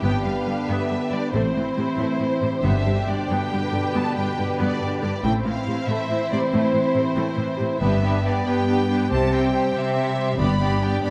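Triumphant and adventurous, this heroic film-score passage in 12/8 gives the melody to lush, vibrato-laden violins, with a second, softly attacked violin line beneath, while violas fill in the background and mellow French horns hold sustained chords. Rich cellos and clear, distant double basses anchor the bass, and very quiet timpani struck with hard mallets sound close and dry at 2.6 s and again at 10.4 s. The ensemble sits in a moderate scoring-stage reverb, and the passage is cut from a longer piece.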